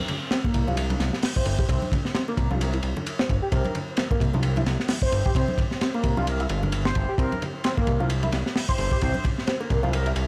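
A swung sixteenth-note groove in 4/4 drives this energetic, raw breakbeat cut, taken from a longer piece and resting on a single C7 chord throughout its roughly 10 seconds. Up front, a crunchy acoustic drum kit of kick, snare, hi-hat and ride has a punchy kick, a high-tuned snare and dark cymbals, all saturated and gritty with a rolled-off top. A fat analog bass sits just as forward, thick and nasal with a fast-attack filter pluck on detuned sawtooth and square waves, entering at 0.5 seconds. An overdriven synth lead plays a screaming, guitar-like riff through tube saturation, ensemble chorus, vibrato and dub echo, with a moving notch colouring its detuned tone. Further back, vintage brass stabs with light vibrato pass through a low-pass filter sweep and dub echo, while ringing congas and bongos trail their own dub echo. The whole mix is echo-heavy, with light reverb, small room ambience and a layer of vinyl crackle.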